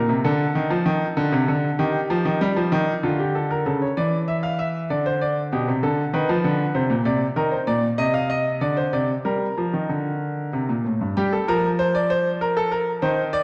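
Driving and solemn, this baroque-style two-part invention for solo grand piano moves at 97 BPM in a straight 3/4, settling into G minor from 7.4 s. The piano is bright and brilliant, with an open, long-sustaining tone placed up front, ranging from G2 to F5 as the harmony passes through chords such as Bbadd9, Cmadd11 and Gm before closing on Fadd11 at 12.4 s. A wet scoring-stage reverb and a dark, warm production surround this brief excerpt cut from a longer piece.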